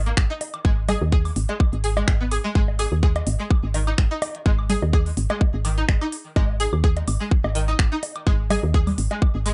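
A tight, overdriven electronic kick sits up front at 126 BPM in 4/4 with a light 16th-note swing, alongside clicky hi-hats and finger snaps from a small-room click kit and a layered woodblock, bongo and conga part trailing dub echo in a large room. A soft, round, woody FM bass pumps against the kick with tube saturation, while a twangy, nasal resonator pluck with a sawtooth bite and a filter sweep carries the riff through chorus and tape echo. This minimal techno excerpt, cut from a longer piece, has a clinical, quirky mood over a single G#5 chord, with a dry mix and a dark top end.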